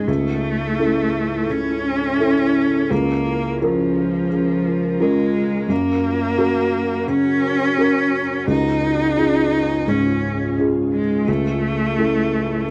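A muted upright piano, a bowed cello and an airy synth pad all sound together from the opening moment of this neoclassical piece for piano and strings, which is cut from a longer work. The mood is intimate and hopeful, with a rubato feel in 4/4. Up front, the felt-muted piano carries the accompaniment with a soft, boxy, dark tone that stretches from deep bass into the middle register. A single cello plays a rich, focused second line with vibrato, sitting close in the mix. In the background, an ethereal pad holds sustained chords, its detuned sawtooth and triangle voices softened by a slow attack, a long release, ensemble chorus and its own reverb. The harmony moves through A/C#, A#m/C#, F# and C#add9 before returning to A/C# at 11.3 seconds, all captured in a dry, close 1970s-style studio sound with a modest booth ambience.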